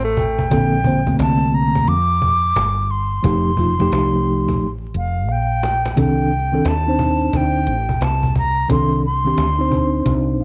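Cool and nocturnal, this short cut from a longer jazz-hop track sets a breathy, tongued concert flute melody over a woody, round fretless bass, a snappy cajon with snares and a mellow tine electric piano heard through its built-in speakers, while a clear tenor saxophone with light vibrato sounds only in the opening half-second. Cassette tape coloring touches the saxophone, cajon and electric piano, and the whole home recording sits in a small room with vinyl crackle. The harmony moves from Gm11 to F9, and a cajon fill and electric piano fill lead into a second section on Cm69 at 6.0 seconds.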